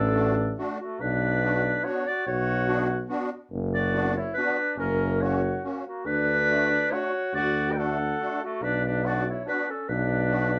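Bouncy and jolly, this short alpine folk dance band excerpt in B minor swings along at 142 BPM in 3/4, with a mellow, up-front clarinet carrying the melody over a light-vibrato trumpet second line, a soft-attack tuba bass and a reedy, shimmering musette accordion accompaniment, all heard as a band playing live in one room with moderate studio reverb and chords moving from D through Bmadd9, Bm/F# and F# back to D and Bm.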